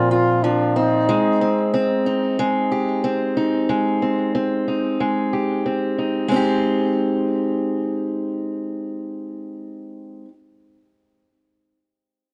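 Delicate, pastoral folktronica in Ab major at 92 BPM, cut from a longer piece, where a mellow, close-miked flugelhorn with delay plays a brief classical-style melody until 2.1 s over Bbsus2 and Abmaj7 chords, while an up-front, boxy picked acoustic archtop guitar, low-pass filtered and treated with delay, carries arpeggios with audible finger squeak through 10.3 s, shifting into a new section at 6.3 s, all within a wet small-room reverb.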